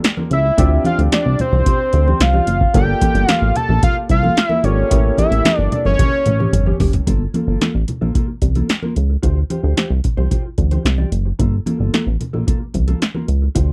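A dry, close recording with little reverb and a 1970s studio character frames this late-night, danceable slice of early-eighties boogie funk in a straight four. An electro analog drum machine sits up front with a deep kick, punchy snare, metallic hats, handclaps and toms, a short room on snare, clap and hats, and a tape-warm tone, while congas with thick, medium-tuned skins and soft hands add acoustic texture in the background. The chorused synth bass is the loudest part, glossy, nasal and dark, mixing pulse and sawtooth tones with a plucky filter and pulse-width movement. A fat analog lead carries the melody up front until 6.8 seconds, evolving through a filter sweep with a sub octave, vibrato and chorus, as a mellow, clean electric guitar plays a fingered, compressed riff with subtle chorus and a warm grand piano accompanies in the background until 7.0 seconds. The harmony circles Gm9 and Dm7, touching A7b9 before a drum fill from 6.0 seconds leads into the second section, where guitar, bass, drums and congas carry on together.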